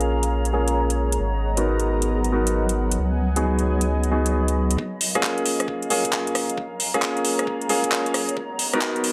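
Lightly reverberant, this bouncy, skippy two-step garage excerpt sets up-front clear grand piano stabs roughened by vintage sampler grit and dub echo over a rubbery, hollow square bass, metallic-hatted garage drums with handclaps and rim clicks, a smooth detuned analog pad pumping in the background, and a cloudy, evolving granular pad, while a knocking electronic kick joins at 4.8 seconds as the section builds.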